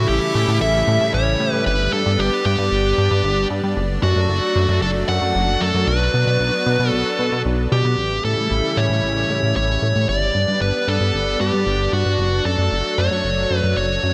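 A straight 4/4 pulse drives this nostalgic, moody synthwave fragment: an up-front, dark, overdriven electric lead guitar carries the melody through delay, a lush, thick unison pad with a slow attack holds bright sustained chords, and a glossy, mellow, chorused synth bass with a filter pluck anchors the low end, all set in a moderate plate reverb with 1980s-style digital production as the piece moves into a second section at 8.0 seconds.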